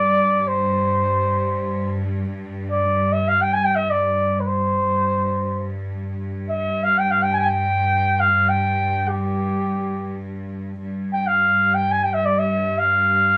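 Passionate and warm, this brief excerpt from a longer piece is a Turkish makam ensemble performance in free time, set in G makam hicaz with tuning at A4 = 438 Hz. A flugelhorn carries the melody between G4 and Ab5 throughout, its warm tone touched with light vibrato and a distant, roomy classical character, while a clear, intense symphonic cello section holds a bowed G2 drone beneath it, also with light vibrato. Moderate studio reverb lends the whole a modest sense of space, and the horn sits above the cellos in level.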